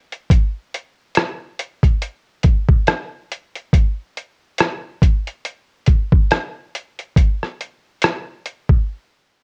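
A muffled, pitched-down sampler-style drum kit sits up front with a thumpy kick, hi-hat and rim click in a gently swung groove, giving this mellow, nostalgic hip hop excerpt its compressed, tape-warm pulse under light reverb and a worn cassette warble with drifting pitch, before the drums stop at 8.9 s for a brief break.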